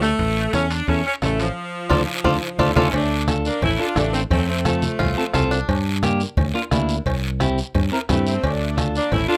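Cumbia at 175 BPM in D minor, passionate and danceable, with an edgy, vibrato-laden saxophone section carrying the melody up front over clean picked electric guitar and a warm fingered bass, a twangy fingerpicked banjo adding a second line at 1.9 and 5.0 seconds, and raspy guiro, ringing timbales and cowbell, soft-beater bombo and thick-skinned congas driving the groove, all in a rough home-demo mix with light reverb, a band accent and drum fill leading into the second section at 2.9 seconds.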